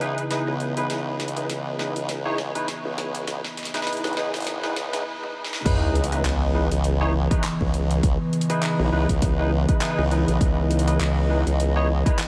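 Gritty and playful, this glitch hop excerpt moves at 101 BPM in C# minor with a swung sixteenth-note feel, opening on a C#m9 chord. A warbling, lo-fi pad with a slow attack and long release sustains dark, nostalgic chords under chorus and pumping, while a barky, bright tine electric piano sits up front with clean stabs colored by ensemble chorus and a diffuse ambient delay. A sawtooth-and-sine wobble bass with a formant filter and tube saturation holds the low end, compressed and forward in the mix. The opening 5.7 seconds build with drum fills on a layered pop kit featuring a fat snare, handclaps, rim clicks, toms and crash, along with filter sweeps, including one on the pad, and a brief stop just before the drop. At 5.7 seconds a punchy electronic kick enters alongside a very quiet sub drop impact that lasts until 8.0 seconds. The whole mix is dreamy and soaked in a huge ambient reverb, with vinyl crackle adding a worn texture.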